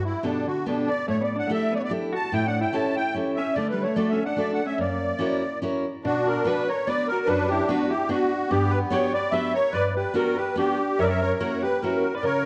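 A reedy, shimmering musette accordion carries the melody close and up front, with a bright, picked steel-string acoustic guitar beside it from the start and a dark, clean hollow-body electric guitar joining with a second line at 0.2 seconds. This bittersweet, whirling musette waltz moves in 3/4 at 145 BPM with a rubato feel, settling into B harmonic minor at 6.0 seconds as the chords turn from Bm through Gmaj7 to F#7. The fragment sits in a wet recital-hall reverb and carries the worn, warbling pitch drift of old cassette tape.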